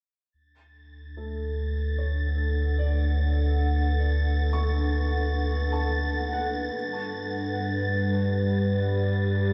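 Drenched in a dark cathedral-sized reverb, this serene, luminous ambient fragment at 75 BPM in D major opens with a deep, round sine sub bass at 0.3 seconds, joined by 1.3 seconds by a warbling, detuned tape-like pad fading in with chorused sustained chords, a soft, felt-muted upright piano with audible action noise fading in with delayed, shimmer-soaked arpeggios, and an airy, breathy wind-like noise texture hovering high above, as the harmony moves from D6 to G at 6.7 seconds.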